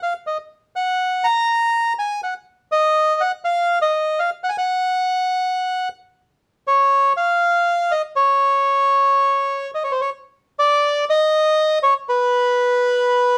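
A lone bandoneon, reedy, dark and smooth, sits up front in a light reverb and plays a passionate, melancholic tango theme with a free, rubato feel, stating it once and then again from 6.4 s in this brief cut from a longer piece.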